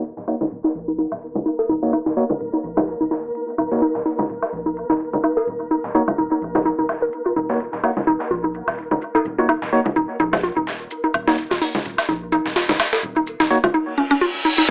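A swung 4/4 pulse at 127 BPM drives this cool, hypnotic minimal techno cut, taken from a longer piece and resting on a single Ebm7 chord in Eb minor. A dusty, sampler-style drum kit supplies hi-hat, shaker and a medium-tuned snare, compressed and overdriven, with the hats and perc pumping against the sidechain. Layered, overdriven woodblock, bongos and cowbell join at 0.3 seconds, while a rubbery square bass bounces low and dark underneath with the same pumping. Up front, a woody, nasal, mallet-like synth pluck plays the riff, and a hollow, organ-like stab with a wave-folded edge punches out short stabs, both widened by chorus and echoed through analog delay as a filter sweep runs across the whole passage. A flickering, granular texture hovers on Bb4 with a slow attack, the mix sounds like a gritty hardware recording through a small speaker in a modest room, and a reverse cymbal rises at 14.0 seconds to close it.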